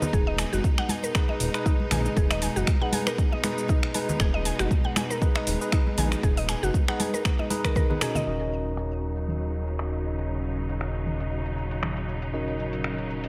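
Spiritual and earthy, this afro house excerpt moves at 118 BPM in Eb minor with a gentle swing, built on an up-front, deep electronic kick, a smooth sawtooth synth bass pumping under sidechain, and a tape-warm afro-pop kit of cabasa, finger snaps, metallic hats and toms, while close, dry congas ring in the background until 8.2 seconds. Above them a woody, round FM pluck spins chorused, delayed arpeggios, a clean tine electric piano adds delayed stabs, and a lush, bright bowed string section holds vibrato-rich chords. During a drum fill from 7.3 seconds, the kick drops out at 7.9 seconds, and the pluck follows at 8.3 seconds as the harmony shifts from Ebm to Ebm7 and filter sweeps move across the drums and strings.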